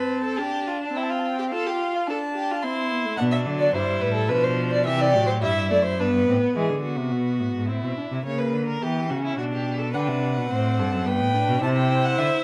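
A dark, woody first violin sings the melody with vibrato in this contemplative, solemn baroque-style fugue for string quartet in 3/4, resting from 6.6 to 9.9 seconds before returning. Beneath it a rich, even second violin and an expressive viola with soft attacks and portamento sit in the distance, while a clear, intense cello enters up front at 3.2 seconds to carry the bass. Close, detailed microphones and a moderate recital hall reverb frame this fragment cut from a longer piece.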